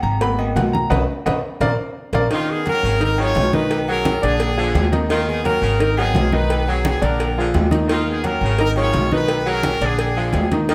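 A clear baby grand piano opens this driving, danceable salsa over a woody, thumpy upright bass, with ringing agogo bells and timbales, low-tuned congas and a tight, high-tuned cowbell set in the background; after a band accent and drum fill, a brilliant, vibrato-rich horn section takes the melody at 2.3 seconds, alongside an edgy saxophone section on a second line, inside a wet large-studio reverb.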